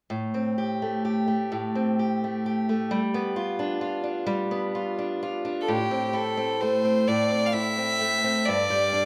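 Celtic folk slow air in a haunting, longing mood, drifting freely in three, where a dark, picked steel-string acoustic guitar sits up front over Am7 and G7 chords until a clear, smooth bowed fiddle with light vibrato enters close and forward at 5.6 seconds to carry the melody, all bathed in the lingering reverb of a recital hall in this brief cut from a longer piece.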